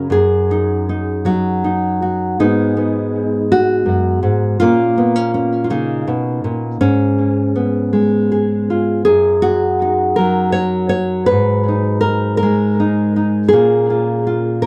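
A rubato 6/8 lilt at 54 BPM carries this peaceful folk excerpt, where a warm, fingerpicked nylon-string guitar plays solo and up front from 0.0 to 14.7 seconds, touched by tape echo and light reverb in a dry, close 1970s-style studio sound, moving through chords such as D#madd11/F#, G#m7, A#m, C#7/G# and F#69 across a range from F#2 to C#5.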